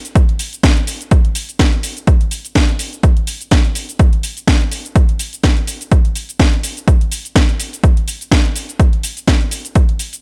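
Funky and sunny, this house excerpt in 4/4 with a swung sixteenth feel features an up-front house drum kit of cabasa, warm hats and a cracking snare, its hats, percussion and cymbals pumping with sidechain under studio reverb, driven by a punchy, overdriven analog kick that enters at 0.2 seconds and sits loud and forward, all over a faint mains hum in digital ambience.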